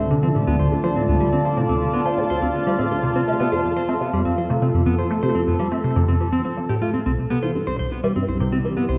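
A steady, straight 4/4 pulse at 123 BPM drives this cosmic, luminous stretch of ambient, sequencer-driven space music, where a juicy, squelchy resonant blip pluck riff with phaser, ensemble chorus and delay runs beneath an evolving, wave-folded pad of sustained chords with chorus and phaser, while a dark, clean electric guitar enters at 0.1 seconds with delayed arpeggios, all moving through Dm, F and C in a wet echo chamber.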